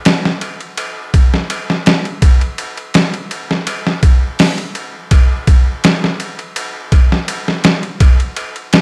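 A straight 4/4 groove drives this dark, hypnotic trip hop fragment, where a pitched-down, compressed sampler-style drum kit sits up front from 0.1 s, its thumpy kick, medium-tuned snare, hi-hat and ride cymbal made gritty by overdrive and set in studio reverb within a digital ambience.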